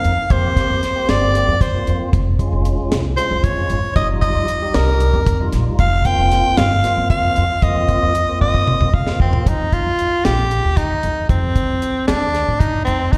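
Progressive instrumental band music in an uneven 7/8 meter, driving and intricate, this clip cut from a longer piece features a raspy, growling soprano saxophone up front, playing a jazz-style solo melody with scooped notes and a slapback echo. A fat tonewheel organ with key click and a slow rotary speaker comps until 9.5 s, while a woody, thumpy pizzicato upright bass and a dry, dark reggae drum kit with a high-tuned snare and tight kick drive the groove. A drum fill from 8.4 s leads into the second section, all heard as a live gig through the venue's PA with recital hall reverb.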